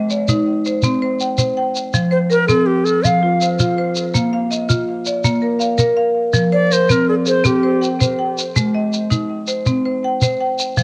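Warm and hypnotic, this short cut from a longer piece is a southern African traditional groove built on an mbira-style interlocking cycle in 12/8 at 109 BPM, tuned to an F equiheptatonic scale. A hard-mallet marimba, bright, percussive and dry, plays arpeggios up front throughout over chords moving from Ab through F5, Bb and Fm, while a grainy, mellow shekere sits close beside it. From 2.1 to 7.9 seconds an airy cedar flute carries the melody with vibrato and a soft attack, both it and the marimba coloured by cassette tape and analog delay, all set in a small room with spring reverb on a home cassette recording.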